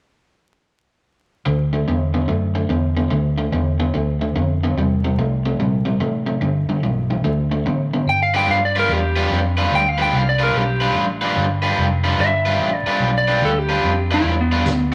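A bright, overdriven semi-hollow guitar sits up front with a spring-reverbed riff in this rollicking, gritty electric blues shuffle excerpt, backed by a round, foam-muted fingered bass; a dark, slightly broken-up, compressed lead guitar takes the melody from 8.1 seconds, and a vintage drum kit's punchy kick, snare and hi-hat appear only at 14.7 seconds, set in moderate studio reverb over a layer of vinyl crackle.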